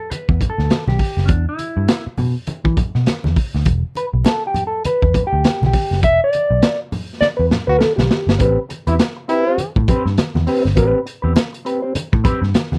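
Hypnotic and cool, this funk excerpt sits at 101 BPM in E minor with a swung sixteenth-note feel, moving from Em7 to Am9 at 8.4 seconds. A mellow, clean electric guitar with wah carries a solo over a round, foam-muted picked bass, a crunchy, saturated breakbeat kit with a punchy kick and rolled-off top, and low-tuned congas in the background, with a band accent from 6.0 seconds and a drum fill leading into the change. A bright, forceful trombone with scooped notes breaks in briefly from 7.7 to 9.7 seconds, all captured in a dry, close 1970s-style studio sound with lossy compression artefacts.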